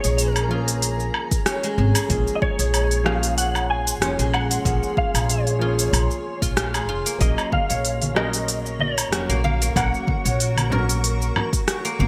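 Organic downtempo in Bb minor at 94 BPM, this earthy, meditative excerpt moves in 4/4 with a light swing on the sixteenths, resting on Bbm7 before shifting to Gb at 7.2 seconds. A dark, clean lap steel guitar carries the melody with slide and a compressed edge, dressed in ensemble chorus and digital delay, until it drops out at 11.0 seconds. Beneath it, a felt-muted upright piano adds soft, intimate accompaniment with sidechain pumping and delay, while a guzheng played with fingerpicks rings out silvery arpeggios through its own delay. A granular cloud pad sits in the background with blurred, evolving sustained chords, and a woody pizzicato upright bass sits up front with a pumping pulse. The organic electronic drum kit brings smooth hats, rim click, shaker and woodblock under gated reverb, joined by a deep, tape-warm electronic kick from 1.3 seconds, and soft-handed, band-limited congas and bongos that enter in the background at 7.5 seconds. 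The whole mix carries a bright 1980s-style digital production sheen with light studio reverb.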